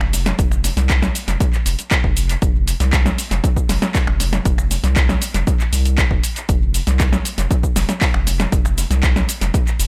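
Driving and gritty, this 118 BPM acid house passage in straight 4/4 sets a deep, nasal analog bass with sidechain pumping under a punchy, up-front analog drum machine of finger snaps, handclaps, hi-hat, shaker and snare, treated with analog delay and a short room, while an electronic kick joins at 0.4 seconds, all inside an echo-heavy digital ambience.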